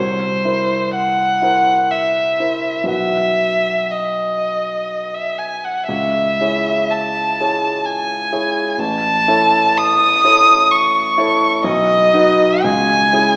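The recording sits in a resonant church or concert hall, bathed in a wet scoring-stage reverb, yet it comes through with a small-speaker quality. This is a tender, lyrical romantic duo for violin and concert grand piano in triple metre, moving with uneven, rubato-shaped beats and tuned slightly high at A4 = 441 Hz. The solo violin carries the melody up front from C5 to D#6, its bowed line expressive and smooth on top, coloured by vibrato and portamento. Beneath it, the piano plays the accompaniment from A1 to F#5, intimate and natural with deep bass, its action noise audible. The harmony passes through C7, B, C#m and A across this 13.4-second excerpt, which is cut from a longer piece and has both instruments playing from start to finish.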